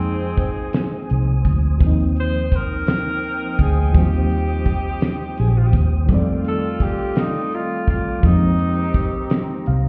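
Heard as if muffled through a wall, the recording carries a light stone-room reverb that softens this short, tender slice of slow R&B in 6/8, moving at 56 BPM in E-flat major with a straight, intimate feel. A damped 70s drum kit sits up front with a fat snare, tight kick and hi-hat, while a vintage muted fingered electric bass adds a round, foam-muted, amped low end from Bb1 to F2. A breathy tenor saxophone carries the melody with light vibrato and a pop-style solo voice, its plate reverb trailed by tape echo, and stops at 9.7 seconds. Beneath it, an FM electric piano with tremolo plays dark, fast-attack, decaying accompaniment and ends on a brief fill from 9.3 seconds, as a smooth-topped horn section adds jazz-style ensemble stabs. A soft, flute-like tonewheel organ holds sustained chords in the background through chorus vibrato and a slow rotary speaker, over a progression that moves from Bb9sus4/F through Eb6 and F13 and back to Bb9sus4/F.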